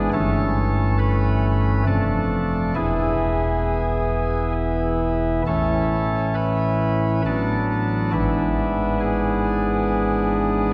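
Majestic and reverent, this classical chorale-style excerpt for solo pipe organ unfolds at 68 BPM in 3/4 with a flexible, rubato feel, tuned to A4 = 438 Hz. A nasal cornet solo stop with baroque voicing and a touch of chiff sits up front, spanning E1 to B4 across the full 10.7 seconds as the harmony passes through chords such as A7/G, Dm/F, E and A before settling on E7/G#. A wet church reverb with a 3.1-second decay surrounds the organ, and the passage is cut from a longer piece.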